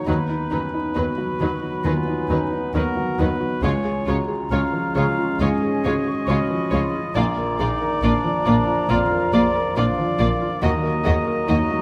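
Moving and hopeful, this short cinematic film-score passage drifts at a rubato 68 BPM in 4/4, with veiled con sordino violins carrying the melody over a second violin line, dark muted violas, cellos and double basses, while a hollow, pure flute, a warm clarinet and a lightly vibrato cor anglais weave secondary lines, a felt-muted upright piano adds intimate accompaniment, and a French horn section holds warm sustained chords in the background, all set in a moderate scoring-stage reverb as the harmony moves from B/D# through Db and Bb to Ebm.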